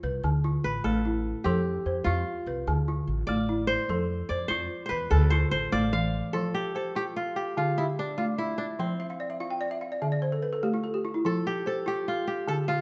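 This is West African traditional string and xylophone music, cut from a longer piece, with a flowing, hypnotic mood in 12/8 with a straight feel. A balafon played with rubber mallets carries arpeggios throughout, its tone round, dry and airy. The fingerpicked kora carries the melody with a bright, crisp, ringing voice and takes a solo through the opening stretch. An upright bass, plucked on steel strings with a growly, woody sound, anchors the low end until about 6.2 seconds. The harmony circles between D minor and F before opening into open-voiced passages, and the balafon adds a fill from 9.0 to 11.3 seconds. All three instruments sit up front in a moderate recital-hall reverb.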